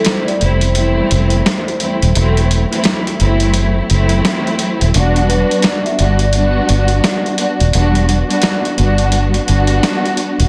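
Boom-bap hip-hop with a dark, gritty mood, swung on the sixteenths, heard as a short cut from a longer piece. A dusty, sampler-style drum kit runs the whole way with compressed hi-hat and a medium-tuned snare that carries the grain of a large room. Up front, a lush, bowed studio string section spreads a smooth-topped, expressive bed with vibrato and a cassette-tape tint, moving through Fmaj7, Am6 and Em7. A fingered electric bass joins at 0.4 seconds, round and foam-muted, sitting low and prominent in the mix. In the background, a mellow vibraphone played with soft mallets and the motor off rings a metallic melody through tape echo until 7.7 seconds. The dry, dense, heavily limited master is laced with vinyl crackle.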